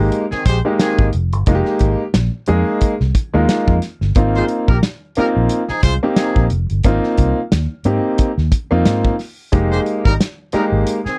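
Hypnotic and funky, this short cut from a longer funk piece sits on a single Fm11 chord with a lightly swung sixteenth-note feel. A clear, woody upright piano plays stabs up front, while a dark, round, foam-muted fingered electric bass and a soul drum kit with a tight kick, medium-tuned snare and rolled-off top keep the groove close at hand. A horn section with light vibrato carries a second line from 0.3 seconds, sounding distant and roomy against the dry, close 1970s-style studio sound.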